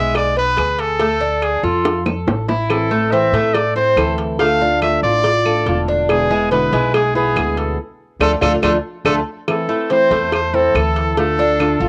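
A clear, up-front trumpet with vibrato and a smooth top carries the pop-style solo melody in this nostalgic, sultry excerpt of Cuban son and guajira in A harmonic minor at 142 BPM. A picked tres with metallic double strings plays arpeggios beneath it, while a thumpy pizzicato upright bass, tight high-tuned cowbell and bongos played with soft hands, and woody claves in the background keep the straight 4/4 pulse moving through a minor progression. After a drum fill at 1.9 seconds, a bright, boxy fingerpicked flamenco guitar joins at 2.7 seconds, and the band hits an accent at 7.8 seconds, with cassette tape coloring the trumpet, tres and guitar in a home recording with moderate studio reverb.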